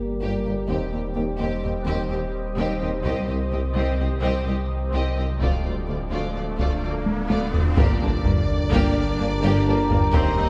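Heavy-stick taiko drums crash in at 3.1 seconds over a tense, futuristic hybrid orchestral and electronic film cue in 5/4, where a mellow, morphing wavetable pad, background French horns, a round sine sub bass, a clear vintage tuba, dark cellos, rich distant double basses and lush vibrato violins carrying a focused melody and second line over expressive violas sustain in a wet scoring-stage space, while an electronic riser builds into an impact and tight trombones join at 7.8 seconds.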